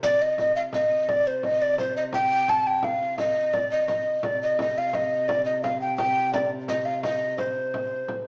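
A breathy, hollow tenor recorder carries the melody up front, its chiff and crisp attack cutting through with vibrato, in this short, driving medieval dance in triple time with an ancient mood. Beneath it a dark, biting viola da gamba holds a single bowed drone, woody and ringing, while a small, bright frame drum played with soft hands sits close and dry. The band plays live in one room with a wet, large studio reverb and a compact, small-speaker sound.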